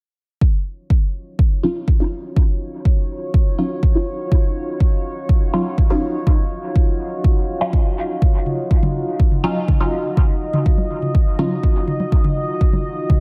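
Dub techno at 123 BPM in Eb minor, cavernous and meditative, cut from a longer piece and resting on a single Ebm9 chord. An up-front, layered deep kick drives from 0.4 s, and from 1.6 s a muted, nasal sawtooth chord stab with a moving notch, phaser, cassette tape grit, dub echo and a filter sweep pulses under sidechain pumping, while a mellow, detuned pad with chorus and its own reverb sustains chords from 1.8 s. Analog, tape-warm electronic toms and congas with dub echo join at 8.5 s, all set in light digital ambience.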